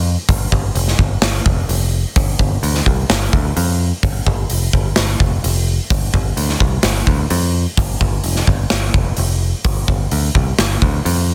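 A picked electric bass opens this hard rock excerpt, sitting up front with a warm, direct tone between F1 and F2. At 0.3 seconds a big rock drum kit joins, its hi-hat, medium-tuned snare and punchy kick ringing in a big room, driving a straight 4/4 at 128 BPM with an anthemic, swaggering mood. The dry, dense and heavily limited modern master keeps both parts close and punchy across the 11.3-second excerpt.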